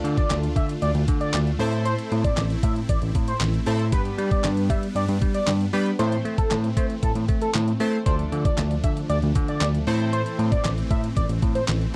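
Dance-pop in A minor at 116 BPM, confident and driving, built on a thumpy, tape-warm 8-bit drum machine with handclaps, hi-hat and a medium-tuned snare, while a bell-like tine electric piano carries the bass up front. Glossy, evolving retro synth keys and huge, lush supersaw chords in the background both pump with sidechain ducking, along with the electric piano, over a Dm, Am, G, Am progression. From 0.2 seconds a bold, mellow octave-doubled lead sings the melody with vibrato, chorus, phaser and slapback echo, all set in a dry, close 1970s-style studio sound in this excerpt from a longer piece.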